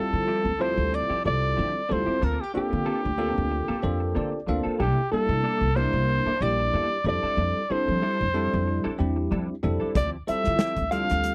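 A clear, up-front trumpet with vibrato carries the melody in this intense, driving electric jazz fusion excerpt in G dorian at 93 BPM, joined by a very quiet, dark hollow-body jazz guitar on a second line. A bell-like tine electric piano with phaser supplies the accompaniment and adds a fill at 3.8 seconds, while a semi-hollow electric guitar with ensemble chorus plays stabs in the background and a woody, thumpy pizzicato upright bass sits up front under a Dm11, Gm11/D, C13, Fmaj13 progression. A damped 70s drum kit with a tight kick and medium-tuned snare enters only at 10.0 seconds, all captured in a dry, close 1970s-style studio sound with a light 16th-note swing.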